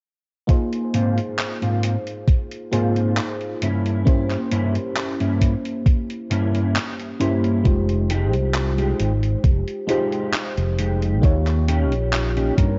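This vaporwave piece drifts at 67 BPM in a straight 4/4 in Ab major, dreamy and nostalgic, and is cut from a longer piece. A mellow FM electric piano supplies soft, round, dark chords bathed in phaser, lush chorus and tape echo. An up-front, thumpy electronic kick is joined by a quieter 80s drum machine whose handclaps and hi-hat carry gated reverb. From 0.9 seconds a clean, fingered electric guitar plays the riff through chorus, 12-bit sampler grit, a low-pass filter sweep and tape echo, ending with a short fill at 12.1 seconds. The harmony moves from Ab69 to C7b9/G, and a punchy fretless bass with tube saturation and chorus enters at 7.7 seconds on the arrival of Fm9, staying through the turn to Eb7. The whole mix has a light reverb and a cassette-tape character, with its highs capped at 7.7 kHz.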